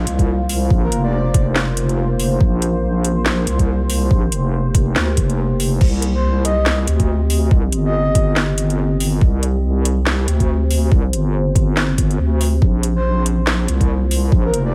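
A heavy, saturated wobble bass sits up front in this brooding deep dubstep excerpt, its resonant square-and-sine tone pushing beneath a knocking, tape-tinged electronic kick in a swung half-time feel. A garage drum kit adds a cracking snare, metallic hats and crash cymbal, while a deep, detuned sawtooth pad with a sub octave holds slow-attack chords, moving from Bbsus2 to Cm at 5.8 seconds and back at 12.6 seconds. A soft, breathy flute-like synth lead with vibrato and dub echo drifts in briefly from 0.8 seconds and returns in short phrases, lending the cavernous space a hushed melodic thread.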